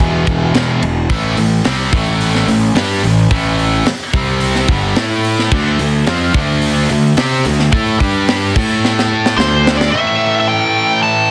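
A straight 4/4 pulse at 109 BPM drives this aggressive hard rock cut in A minor, where a bright, double-tracked high-gain guitar riff runs throughout over growly, fuzz-laden picked bass and a tight metal drum kit with a high-tuned snare and a rolled-off top, the drums landing a fill from 8.8 s before they and the bass stop at 9.9 s, leaving the riff beside a nasal, overdriven lead guitar with a parked wah whose melody returns at 9.4 s.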